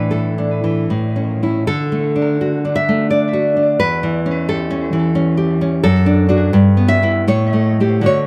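A fingerpicked nylon-string guitar with fresh strings plays alone, up front and close-miked in fine detail with a touch of tape echo and light reverb, through this sunny, warm 8.3-second excerpt of a romantic classical solo piece in a rubato 3/4 that drifts between 73 and 91 BPM, moving from an opening Asus4 through A, D and A7/E before settling on A7.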